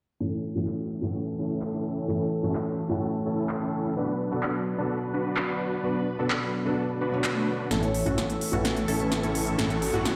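A felt-muted upright piano sits up front in this uplifting, triumphant festival progressive house cut, its soft, intimate accompaniment carrying audible action noise at 128 BPM in A major. Beneath it, a lush unison pad with chorus holds airy sustained chords in the background, while a dense compressed supersaw plays a huge, thick riff through a low-pass filter and tape echo as the harmony moves from A to Bm, with a filter sweep running across the first section. A big-room dance drum kit enters at 0.7 seconds with a punchy snare, crisp hats and handclaps, sounding up front and re-recorded in a large room. A very quiet swell and riser arrives at 7.1 seconds, and at 7.7 seconds the music returns to A for a build-up with a drum fill, a filter sweep on the supersaw, a menacing, saturated detuned saw bass, and a bright unison pluck playing faint arpeggios through a phaser. A dark, ringing vibraphone with medium hard mallets adds a short melody with tape echo from 7.8 seconds. 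The whole mix carries a moderate hall reverb and the stone-room colour of a big sound system in a bare space, and it is cut from a longer piece.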